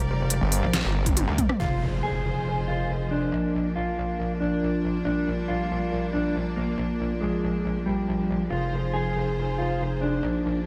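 Heavy wobble dubstep in a half-time feel, aggressive and menacing, this excerpt opens on a drop where a metallic, distorted wobble bass and a snarling saw bass growl beneath a bright, biting string section and a lo-fi, warbling pad, both pumping against the sidechain. A crisp, tape-toned drum kit with a deep snare and a knocking kick runs a fill into an electronic impact at 1.6 s. From there a dark, clean electric guitar carries the melody through dub echo over the sustained strings and pad, all in a light digital ambience.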